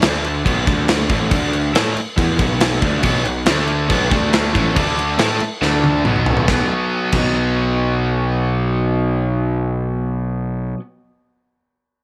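A bright, punchy classic rock clip with a light, small-room reverb around it, sunny and driving in a straight 4/4 feel. An overdriven semi-hollow guitar plays the main riff from the start, its hollow-body tone warm, while a growly, fuzzed bass with a direct-and-amped bite sits up front beneath it. A gated 80s drum kit plays alongside them, with a punchy kick, a medium-tuned snare, bright cymbals and toms ringing in a stony, gated room. At 3.0 seconds a raw garage guitar joins with a brighter, overdriven riff of its own. The drums play a fill from 5.6 to 6.5 seconds and stop at 7.2 seconds. The harmony circles mostly around D5, B5 and A5 power chords, with a brief B7sus4 adding color before the guitars and bass carry on to the end of the fragment.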